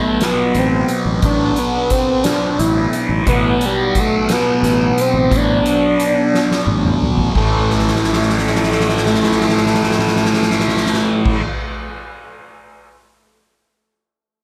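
A bold, warbling octave-doubled lead with a detuned, vintage sawtooth edge carries the melody through chorus and analog delay in this dark, hypnotic psychedelic rock excerpt in 6/8. Beneath it, a double-tracked, bright fuzz guitar plays a distorted riff through a phaser, while a growly, round fingered bass adds overdriven grit under a soft-mallet drum kit whose fat snare and boomy kick sit up front, treated with analog delay. The drums break into fills from 6.3 s, and the harmony moves from Bm/A to A5 at 7.4 s, set in an echo-heavy mix with light small-room ambience.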